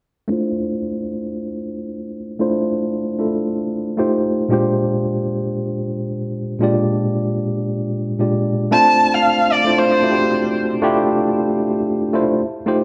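A worn, slightly out-of-tune tine electric piano opens this deep, soulful amapiano excerpt at 0.3 seconds, lightly overdriven and sounding as if through built-in speakers. Its Dm9, F7 and Bb13 chords move under a filter sweep with a gentle sixteenth-note swing. At 8.7 seconds a single dark, woody erhu enters with a brief bowed melody, full of vibrato and portamento with a soft attack and trailed by analog delay, until 10.6 seconds, while a wet spring reverb and echo-heavy mix lend the whole fragment a cavernous air.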